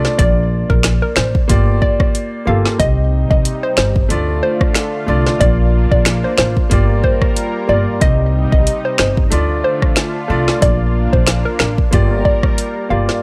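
Dancehall at 92 BPM with a swung sixteenth-note feel, hypnotic and tough, cycling through Bb, Gm7, Cm and Dm in this excerpt. Up front, an electronic drum kit with a deep kick, woody snare, metallic hats, rim clicks and finger snaps sits beside a thumpy pizzicato upright bass, while a polished grand piano accompanies and a hollow, bouncy square-wave pluck carries the melody through chorus and tape echo. From 2.8 s a thick, warbling sawtooth pad adds sustained chords with chorus and sidechain pumping, and the whole recording has a dry, gritty hardware character.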